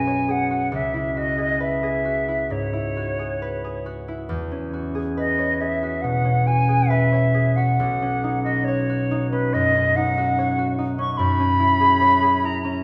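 Impressionist classical duo for flute and harp, luminous and dreamy, moving in a rubato 4/4 at about 69 BPM in B major, tuned slightly low to A4 = 438 Hz. The silver concert flute sings a pure, tongued melody with vibrato, while the fingerpicked concert harp rings out a warm accompaniment beneath it, both parts playing throughout this 12.8-second extract from a longer piece. The harmonies drift from B69 through C#m11, E69 and Badd9 to F#9sus4, all bathed in the wet reverb of a recital hall.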